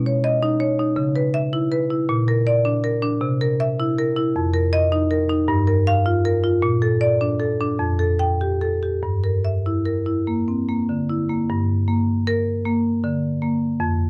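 In a slow, flexible 6/8 that moves at roughly 48-54 dotted-quarter beats per minute with a rubato feel, this contemporary classical piece for solo marimba drifts in a hypnotic, reflective mood centred on G dorian. The marimba, played with medium hard mallets on rosewood bars, carries everything alone from 0.0 to 14.1 seconds, ranging from F2 up to G5. Its tone is woody and percussive with a bright edge, close-miked and up front, so each stroke sounds dry and full. The harmony wanders through colours such as Badd9, C#m7, Bb, C7, F7sus4, Gm7, Bbmaj7, Fadd9 and Gm6 before a new section settles on Gm at 11.5 seconds. Light reverb and a dark, warm production frame the instrument in this fragment cut from a longer work.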